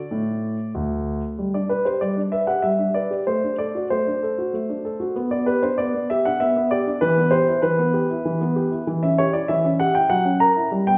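In an unhurried, straight three-beat lilt, this elegant, graceful excerpt from a classical-period piano sonatina features a single warm grand piano, up front and ranging from D2 to A#5, opening on a D5 chord before a new section arrives at 1.4 seconds and moves through G, D7/A, G/B, Em and C#dim/E to settle on F#7 at 10.1 seconds, all bathed in the wet reverb of a recital hall.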